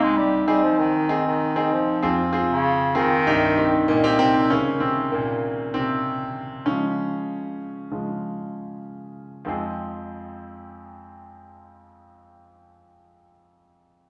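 Pop in F minor at 97 BPM with an earnest, dramatic mood, cut from a longer piece, where a bright, soft-attacked bass clarinet carries the vintage, classical-style melody up front until 4.2 s over a clear, polished concert grand piano with deep bass and short sustain, which then takes a solo from 4.5 to 9.5 s, all played live in one room and bathed in the wet reverb of a large studio.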